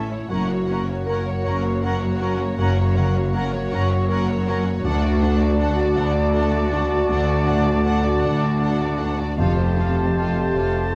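Tender and moving, this brief cinematic fragment in a rubato 6/8 gives the melody to a dark, woody violin section, while a mellow clarinet, a pure silver flute, a distant oboe and a softer, expressive second violin section weave quiet second lines. Beneath them, a felt-muted upright piano and a very quiet, focused viola section accompany, a French horn section holds sustained chords in the background, and a ringing concert harp adds faint arpeggios. Clear double basses and lush cellos carry the bass through F#, D and Fadd9 harmonies, with every part sounding for the full 10.9 seconds in a moderate scoring-stage reverb and a dark, warm production.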